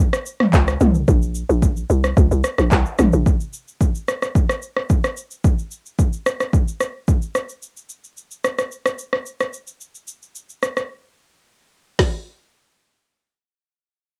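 Amapiano with a hypnotic, deep mood, built on an electronic deep house drum kit that runs from 0.1 to 12.1 seconds, layering a punchy kick, woody snare, dark hats, handclaps, rim click, shaker and toms, all pushed up front with a cassette-tape effect and a small-room character. A hollow, bouncy log drum bass with a fast attack and decaying FM tone plus a noise layer sits up front only at the start, from 0.5 to 3.2 seconds, before a break at 10.9 seconds. The home cassette recording is dry, and this passage is cut from a longer piece.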